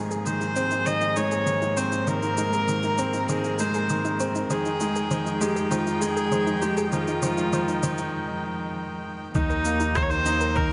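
A straight 4/4 pulse at 99 BPM in F minor carries this intimate, melancholic piano and strings electronica, where a boxy, up-front baby grand riff and a reedy solo viola melody sit over sidechain-pumped, airy string quartet chords under a filter sweep, a very quiet, mellow pluck arpeggio and a produced shaker and rim click, building to a break at 8.1 seconds before a thumpy, muffled kick and a gut-toned bowed double bass section drop in at 9.4 seconds on an Ebsus2 chord, with the mix bathed in wet echo-chamber reverb.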